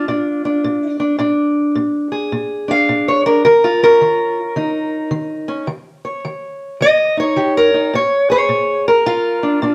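A lone fingerpicked steel-string acoustic guitar opens this short excerpt of acoustic country blues, sitting up front from the very start to 9.7 seconds. The mood is rollicking yet soulful, moving at 107 BPM in 4/4 with a loping swing on the eighth notes, and the instrument is tuned slightly low, to A4 = 439 Hz. Its parlour-style tone is dark, woody and boxy, with the dull ring of old strings, and the playing spans from a low Bb2 up to F5. The harmony starts on Bb7, shifts to Eb7 at 3.4 seconds, and returns to Bb7 at 7.9 seconds. A moderate studio reverb gives the guitar a modest sense of room around it.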